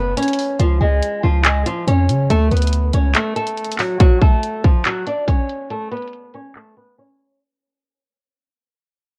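A dark, fingerpicked flamenco guitar carries the melody from the very start, its acoustic tone set up front and softened by a low-pass filter, in this eerie trap cut from a longer hip hop piece. The track runs at 141 BPM in 4/4 with a half-time feel, sitting in F# harmonic minor with tuning at A4 = 437 Hz as the chords move from F#5 through C# and D to F#m. A punchy, heavy 808-style bass with a sine body, a noise layer, a fast attack and a decaying sound sits up front beneath the guitar, but it drops out at 3.1 seconds. The electronic trap kit enters at 0.2 seconds with a hard-clipped kick, bright hi-hats and handclaps, its produced sound carrying a tape-tinged glow. Around everything hangs a digital ambience, worn and warbly like old cassette tape, with drifting pitch and its own low-pass filtering. After a short break, a filter sweep and fade-out begin at 4.0 seconds and carry the second section to the close.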